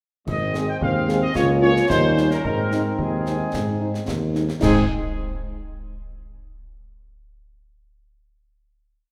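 A wet concert-hall reverb surrounds this short, rousing military-style march for wind band, a complete piece in Ab major at 111 BPM in a straight 2/4. A dark, distant trumpet section carries the melody with a soft attack and tight ensemble playing, while a clear trombone section holds sustained chords in the background. Up front, a roomy tuba anchors the bass on the beats, and from 0.5 seconds a mellow French horn section adds after-beat chords with light vibrato. A warm euphonium sings a counter-melody with vibrato from 0.8 to 4.3 seconds. Clash cymbals, concert bass drum and a marching snare in a small-room sound drive the festive pulse before the band settles on a final chord at 4.6 seconds.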